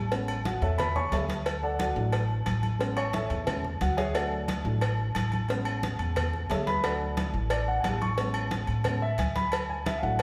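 Salsa with a festive, sunny mood, this brief cut from a longer piece is carried by a concert grand piano that solos throughout, its tone warm with a deep low end and short sustain, placed up front. An upright bass anchors the harmony with thumpy, gut-string pizzicato, also close and present, while the chords sway between Amaj7 and D. The percussion sits a little lower in the mix: congas with a thick-skinned, medium-tuned sound, a round, low-tuned cowbell heard close and dry, and ringing metal-shell agogo bells and timbales in a live room. Woody claves join at 3.0 seconds, distant and tucked into the background. A generous large-studio reverb places the ensemble further back in the room, giving the groove a spacious, lively glow.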